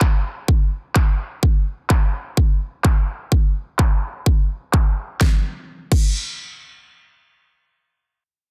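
A punchy, overdriven electronic kick sits up front in this triumphant, anthemic festival progressive house excerpt at 127 BPM, driving a straight 4/4 alongside a big-room dance drum kit whose huge snare, handclaps and crash cymbal sound layered and filtered as a sweep runs over the drums until 5.2 seconds, both parts stopping at 6.1 seconds in a dry, dense, heavily limited mix.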